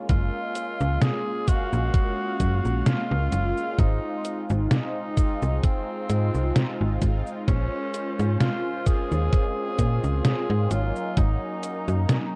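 Dark, cassette-tinged production with a digital ambience gives this short vaporwave excerpt a hazy, nostalgic cast. At a slow 65 BPM in 4/4 with a light swing on the sixteenths, a thumpy electronic kick and a detuned 8-bit drum machine sit up front, the latter supplying cabasa, hi-hat and a medium-tuned snare with a sampler-style edge. A snappy FM bass with a metallic, quickly decaying attack anchors the low end. Round, sawtooth synth brass carries the accompaniment through a phaser and lush chorus. Alongside it, a raspy tenor saxophone takes the solo melody with light vibrato and a forceful, pop-style delivery, roughened by vintage 12-bit sampler grit and trailed by tape echo. At 7.5 s a warbling, lo-fi pad with a slow attack and built-in reverb enters softly in the background, as the harmony moves from Gbmaj9 and Fm7/Ab to Bbm9 and Ab9sus4 in Bb minor.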